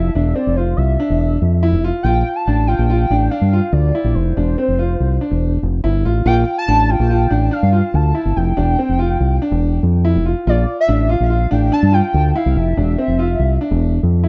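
From the first moment, an overdriven fingered electric bass, a grand piano and a hollow square lead sound together in this brooding, tense piece of progressive instrumental band music, cut from a longer work. It moves at 143 BPM in an uneven 5/4 with a straight feel, tuned to A4 = 438 Hz. The bass sits up front, dark, round and directly amped with grit, while the boxy piano plays arpeggios in a middle register under a plate reverb. Above them, the lead carries the melody with a woody, mellow square-wave tone that blends in sawtooth and sine, its fast attack and sustained notes colored by vibrato, portamento, chorus, phaser, plate reverb and digital delay. The harmony alternates between Bbmaj7 and open F-based chords such as F5, Fmaj7(no3) and Fsus2, and the three parts stop together near 14.3 seconds. The mix has a light reverb and the rough feel of a home demo.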